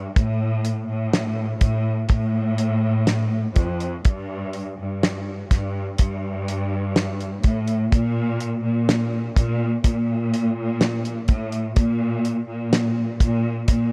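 Melancholic and longing, this slow pop ballad excerpt at 62 BPM sets a rich, bowed cello section with vibrato on the bass line from F2 to Bb2 beneath a dry, damped 70s drum kit of hi-hat, fat snare and tight kick entering at 0.2 seconds, both up front in a close, unreverberant mix colored by the warbly pitch drift of worn cassette tape.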